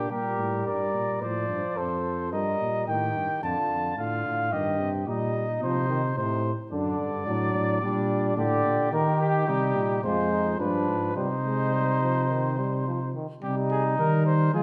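Heard through the reverb of a recital hall, this short excerpt of a classical, imitative brass canzona has a driving, serious character in a steady four. A mellow trumpet with vibrato and a soft attack carries the melody up front, while a distant, roomy flugelhorn sings a second line, a clear euphonium supplies accompaniment, and a tuba with light vibrato anchors the bass close to the listener. The harmony moves through a sombre minor progression before landing on C minor at 11.2 seconds, just ahead of a brief new section at 13.4 seconds.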